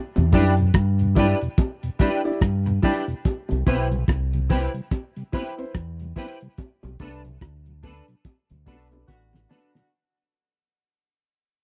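A relaxed 72 BPM roots reggae groove in 4/4 with a swung sixteenth feel rides on a cloth-damped, thuddy drum kit with a fat, gritty snare and tight kick, up front alongside a deep, round dub bass, while tight high-tuned bongos sit lower in the mix. A bright, clean semi-hollow guitar with chorus and tape echo, woody upright piano stabs and a soft, flute-like tonewheel organ turning through a slow rotary speaker fill out a laid-back, meditative progression of Em7, Cmaj7 and Bm7. The dry, close 1970s-style sound fades throughout, with a band accent from 6.6 seconds, a drum fill at 9.1 seconds and a distant, mellow horn section appearing faintly at 8.7 seconds.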